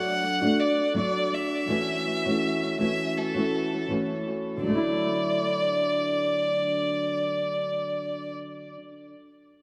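This is a sunny, easy-going pop piece at 82 BPM in 4/4 and D major, with a light 16th-note swing, cut from a longer piece. A single bowed violin carries the melody with a rich, smooth, even tone and vibrato, sitting up front in the mix yet sounding distant, coloured by tape echo. Beneath it, a thumb-plucked acoustic flamenco guitar provides warm, double-tracked accompaniment, also up front and also treated with tape echo. The harmony moves from a rootless Bm7 to F#m7, then opens onto Dadd9 as a new section begins at 4.6 seconds. A wet spring reverb with a long tail and an echo-heavy mix give the recording a spacious, shimmering sheen. The violin drops out at 8.3 seconds, leaving the guitar to ring on until 8.9 seconds.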